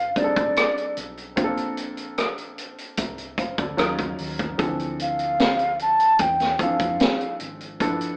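A breathy, mellow concert flute sits up front with expressive vibrato and a crisp attack, carrying the melody of this cinematic, bittersweet slice of lush 1970s-style soul until 7.4 seconds. Beneath it, an intimate baby grand piano with audible action noise and short sustain moves through rich chords from F13 to Bbmaj7, Ebm9 and Dm9. A round, dark hollow-body electric bass sits in the background, and a vintage drum kit with a high-tuned snare, punchy kick, rim clicks and hi-hat enters at 0.2 seconds, all captured as a band playing live in one room with moderate reverb and a nostalgic AM radio sound.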